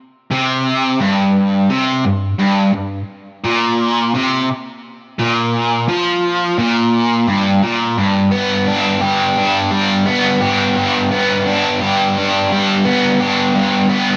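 Trippy and hypnotic, this rock excerpt in 4/4 features a single biting, overdriven electric guitar, picked and double-tracked up front with harmonic tremolo and light reverb, playing alone from 0.3 to 14.2 seconds across a range of G2 to G4 as the harmony moves from Gmadd11 to G at 8.0 seconds.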